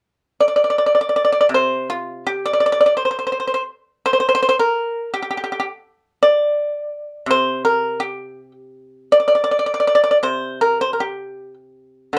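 A solo pipa enters at 0.4 s and carries this short passage of Chinese traditional music alone until it ends at 12.2 s, having been cut from a longer piece. The mood is elegant and longing, and the playing moves in a free, rubato feel around a nominal 82 BPM in 4/4. Played with fingerpicks, the acoustic pipa sounds percussive, dry and up front, ranging from C3 to D5. A moderate studio reverb surrounds it, and the overall production leans dark and warm. The whole passage unfolds as a single section.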